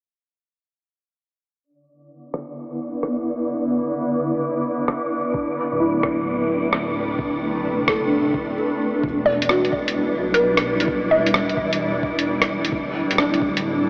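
Melancholic and nocturnal, this future garage excerpt moves at 130 BPM in 4/4 with a swung sixteenth-note feel in E minor, tuned slightly flat. A cloudy, evolving granular pad sits up front with sustained chords and sidechain pumping, joined by an airy, breathy wind-like noise texture that drifts through ensemble chorus, both arriving around 2.4 seconds alongside an up-front, muffled sampler-style kit of hi-hat and rim click. At 5.3 seconds a thumpy, pitched-down electronic kick and a soft, felt-muted upright piano enter, the piano sitting in the background with audible action noise, 12-bit grit, pumping and analog delay, while a deep, rumbling detuned saw bass follows shortly after. From 9.3 to 11.6 seconds a hollow, bouncy square-wave pluck carries the melody through chorus, cassette tape coloring and tape echo as the harmony settles on Em7 before moving to D7sus4. The whole mix is soaked in a huge ambient reverb with a long tail, low-pass filtering and an AM radio haze, with a filter sweep running through the first section.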